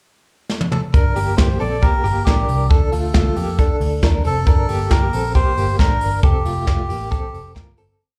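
A soft brush drum kit opens with a short fill before the brief pickup gives way to a bittersweet, wistful jangly indie pop verse, the up-front brushes driving a dance-floor beat with off-beat open hats, punchy kick and a medium-tuned snare. A reedy, breathy melodica spins a motif-based melody through slapback echo, while a bright, direct-recorded clean guitar rings out picked arpeggios doubled in sixths with tremolo, over a dark, foam-muted vintage bass pushing round, driving eighth notes through Gm, Dm and Fadd9. The whole thing sounds like a live club gig heard through the venue's PA in a small room, fading out from 6.2 seconds.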